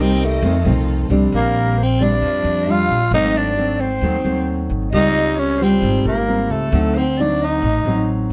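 Bossa nova in Bb major at 133 BPM, this sunny, breezy fragment features a raspy, growling tenor saxophone out front with scooped notes and vibrato, over thumb-plucked nylon-string guitar and a woody, pizzicato upright bass, while lush bowed strings hold sustained chords until 1.3 seconds, when a breathy jazz flute enters with a second line, all in a moderate studio ambience.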